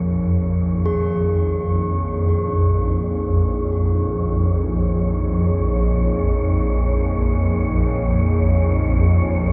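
Dark ambient drone in free time and Bb minor, ominous and unsettling, set in a wet cathedral reverb with a dark, warm production. An up-front swarming drone, detuned and wave-folded with a granular, tense edge, anchors the low register while a deep, full-bodied analog pad with chorus fades in on sustained Bb minor chords. A breathy, wind-like tuned noise texture also fades in high above, and a bronze singing bowl struck with a wooden striker rings out metallic, slowly beating arpeggios through delay until 6.6 seconds.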